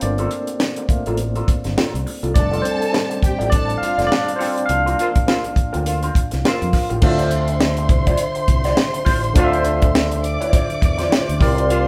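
A swung sixteenth-note groove at 103 BPM in 4/4 drives this bittersweet, silky slice of lush 1970s-style soul in D minor, with a tight funk drum kit up front (high-tuned snare, tight kick, hi-hat and crash) and fingered electric bass holding the low end as a barky, lightly overdriven tine electric piano with fast tremolo takes a solo through the first 7.0 seconds, beside a dark, lo-fi wah guitar riff from a small old amp. Dark, bowed symphonic strings enter at 2.4 seconds with a lush, vibrato-rich second line, and a mellow vintage horn section adds tight stabs from 5.0 seconds as the band hits a shared accent before the move to Dm7. The chords run Gm9, F6, C7sus4 and Dm7, and the whole band plays live in one room with moderate large studio reverb, cut from a longer piece.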